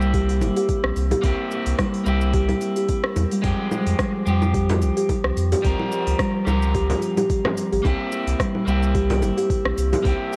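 This excerpt opens at once with a woody, hollow kalimba tracing mellow arpeggios over a round sine sub bass, setting a meditative, organic downtempo mood at 109 BPM in 4/4 with a gentle sixteenth-note swing. A twangy, slightly broken-up electric guitar plays accompaniment beneath them, its picked playing carrying delay and a sidechain pumping, while the kalimba has its own delay. The rhythm comes from a deep house kit of congas, smooth hi-hat, rim click and shaker in a small room, joined by a soft, overdriven electronic kick. At 4.7 s a frame drum enters with hard-handed, saturated hits. The harmony moves from C7 through Fmadd9 and Dbmaj7 back to C7, and the whole mix sits in a lush hall reverb with the worn, warbling pitch drift of old cassette tape.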